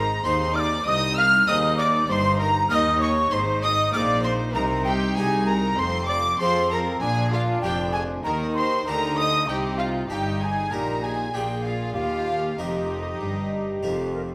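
A bright, airy wooden flute leads this festive, brilliant baroque-style concerto passage in Eb major at 97 BPM, its straight-toned, tongued melody sitting close and expressive above the ensemble. Gut-strung period violins also carry the tune and add a second line with light vibrato, while a dark, nasal viola section and a Flemish-style harpsichord fill in the accompaniment, and rich cellos and double basses anchor the bass. The whole group sounds in a reverberant recital hall, and the 14-second passage is cut from a longer movement, arriving on Eb at 12.0 seconds.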